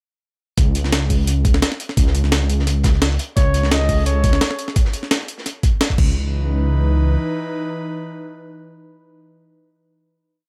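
A lush, dreamy liquid drum and bass piece at 172 BPM in C# minor, its sound bathed in studio reverb. From 0.6 seconds the drop arrives all at once: a thumpy, compressed electronic kick and a gritty sampler-style breakbeat kit with a high-tuned snare, closed hats and crash roll along up front, while a second, crunchy breakbeat loop with edits sits saturated and rolled-off in the background. Underneath, a dark detuned saw bass on C#2 rumbles and beats, holding long gliding notes. At 3.4 seconds a mellow flugelhorn with vibrato and tape echo plays a brief, free jazz-style solo between C#5 and D#5, over an Amaj7/C# chord, and an airy, breathy pad with chorus and sidechain pumping rises in with slow-attack sustained chords. The drums drop away near 6 seconds, landing on a final C#m9 hit as the bass and soft pad ring on, the pad lingering until 9.2 seconds.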